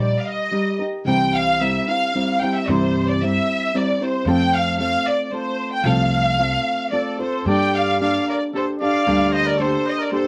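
Mexican folk in a mariachi vein, this proud, romantic excerpt sways in a flexible, rubato three-beat feel. A lush, bowed violin section sings the melody up front with expressive vibrato and a slightly distant sheen, over dark, thumb-plucked nylon-string guitar chords and a woody, thumpy pizzicato upright bass that drops out at 9.7 seconds. At 6.9 seconds a clear solo trumpet enters with a soft attack and light vibrato on a second line, all set in a moderate studio room with a layer of vinyl crackle.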